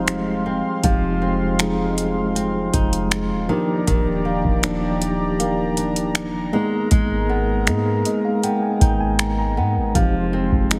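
Heavily compressed and radio-like under a light reverb, this dreamy, tender contemporary R&B excerpt sets a mellow, up-front tine electric piano, which plays a fill from 7.7 to 9.9 seconds, over a smooth sawtooth analog pad with chorus and sidechain pumping, fingerpicked flamenco guitar arpeggios with audible finger squeak and tape echo, a deep, dark sine 808-style bass, and a booming analog drum machine of finger snaps, metallic hi-hats and a deep kick, all moving through Fm7, Ebmaj7 and Abmadd9.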